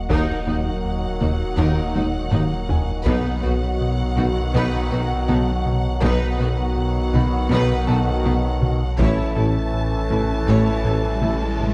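Cinematic hybrid orchestral and electronic film score, brooding and tense, where an expressive, distant studio violin section carries the melody over a chamber violin second line, a background viola accompaniment, very quiet cello, double bass and tuba, sustained trombone and mellow French horn chords, a detuned analog pad, a deep sub bass with octave, a rubbery square-wave bass riff, tight sequenced synth arpeggios, a bright grand piano texture with tape echo and a very quiet hard-stick taiko ensemble that plays a fill at 2.0 s, all set in a dark production with moderate scoring stage reverb before a faint electronic riser enters at 10.4 s.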